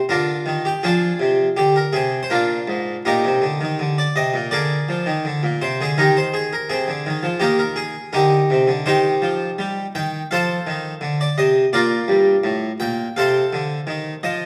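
A solo harpsichord opens this short, flowing cut from a baroque-style suite movement, plucked and brilliant in the Italian manner, with three sets of strings giving it a full, mid-forward voice placed up front. In Eb major at 83 BPM in 4/4, the dance-like line moves with a rubato feel across a range from G2 to G5, its harmony passing from Bb7 through Eb and Cm/Eb to F7 and Bb before closing on F7/C at 13.2 seconds. A dark production and a generous scoring-stage reverb, 1.6 seconds long, surround the instrument over its 14.5 seconds.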